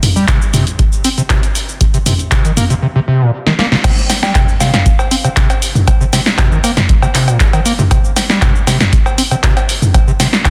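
Squelchy, gritty overdriven acid bass drives this raw, trippy acid house cut from a longer piece, its resonant square-wave riff running from Bb2 to C4 with distortion, subtle chorus and sidechain pumping at 118 BPM in straight 4/4, in C minor. A punchy analog drum machine sits up front with cowbell, crash cymbal, handclaps, hi-hat, shaker, snare and toms, the snare, clap and hats carrying a short room sound, while a dry, deep electronic kick anchors the low end from 0.3 seconds. A drum fill from 3.5 seconds and a band accent at 3.7 seconds lead into the drop at 3.8 seconds, which runs to the end. Briefly, from 4.2 to 4.8 seconds, a soft, pure FM bell melody glints in the background between F5 and G5, coloured by chorus, phaser and digital delay. The mix has light reverb and a dense, heavily limited modern master.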